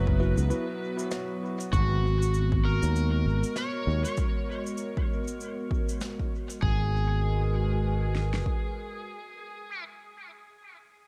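A dark, softly roomy mix opens this short cut of meditative, spacious ambient dub, where a warbling, detuned tape-like pad holds sustained chords beneath an overdriven slide guitar melody trailing dub echo. A growly, up-front fingered electric bass and a deep house kit with a punchy kick and fat snare carry the swung 4/4 groove, while an airy cabasa and snare layer adds echoed texture until 6.6 seconds. A bell-like tine electric piano places a few background stabs near the start, just as a break begins that runs to 1.7 seconds.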